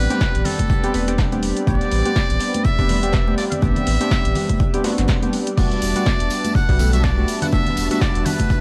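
A muted trumpet leads this deep house excerpt, its buzzy, thin metal-mute tone carrying a jazz-style solo melody with light vibrato and scooped notes, trailed by dub echo, over a hypnotic groove at 123 BPM with a 16th-note swing. Around it, a hollow, flute-like pad holds sustained chords in the background with chorus, 12-bit sampler grit and sidechain pumping. Round analog keys play detuned stabs with filter sweeps, chorus and dub echo, while a deep sine sub bass pumps underneath on an Am11 chord. A cloudy granular pad adds a blurred, very quiet texture. The beat joins at 0.1 seconds with a dry analog drum machine with snare, hi-hat and crash, background congas, and a dark, very quiet acoustic jazz kit, and a punchy electronic kick sits up front from 0.2 seconds. At 5.6 seconds a distant, jingly tambourine and a shimmering string machine on violins enter, all over small-room ambience and vinyl crackle.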